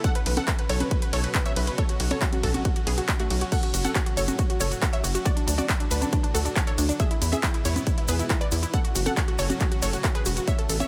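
A straight 4/4 pulse at 138 BPM drives this bittersweet, soaring uplifting trance passage in F# minor, cut from a longer piece. An overdriven, layered electronic kick sits up front with a small room ambience, joined by a dry analog drum machine supplying congas, crash and ride cymbals, handclaps and hi-hat. A tight sawtooth-and-square sequencer bass enters at 0.3 seconds, its fast, decaying filter pluck pumping with sidechain compression, while a grainy acoustic tube shaker joins close in the background at 3.5 seconds. The lead is a lush, detuned unison pluck with a noise layer and wave-folded sine, pumping and trailing delay as it carries the melody, shadowed by a very quiet second pluck line with a short decay. Behind them, a bright supersaw pad with a slow attack and long release holds sustained chords that also pump, moving from Bsus2 through F#m, D and E and back to F#m, all within a close, nearly reverb-free sound.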